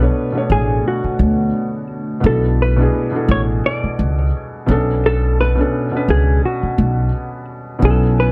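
This hip hop excerpt, cut from a longer piece, carries a melancholic, nostalgic mood over a gently swung sixteenth-note feel. An up-front upright bass anchors the low end with a woody, pizzicato tone on steel strings and sits loudest in the mix. A felt-muted upright piano supplies soft, intimate accompaniment with audible action noise, while a clean, compressed hollow-body electric jazz guitar carries the fingered melody through a low-pass filter. A deep, detuned sawtooth pad with a sub octave drifts in the background from 0.4 to 2.2 seconds and returns at 7.8 seconds, its slow attack and long release softened by chorus and its own reverb. The harmony moves from Bm9 to E9sus4 and back to Bm9, all wrapped in a dark production with light reverb.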